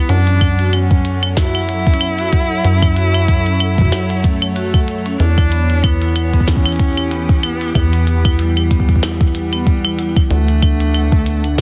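Cello, glassy FM pad, vibraphone and acid bass all sound from the first moment of this eerie, melancholic IDM excerpt in E dorian, moving at 94 BPM in 4/4 with a light swing on the sixteenths. A glitchy drum kit of claves, clicky hats and a tiny snare joins at 0.1 seconds, and a soft electronic kick follows at 0.4 seconds, sitting loudest in the mix. The clear, focused cello carries the melody with vibrato, its single bowed line touched by digital delay, while the vibraphone, played with medium mallets and motor off, spins ringing metallic arpeggios through its own delay in a boxy small room. Underneath, the rubbery square-wave acid bass plucks through a resonant filter with a saturated, dark edge, and the ethereal pad holds slow-blooming chords that breathe with sidechain pumping and chorus shimmer. The harmony drifts from F#m7 to Em and then to D6, and the dry, dense, heavily limited master keeps the whole arrangement close and tight.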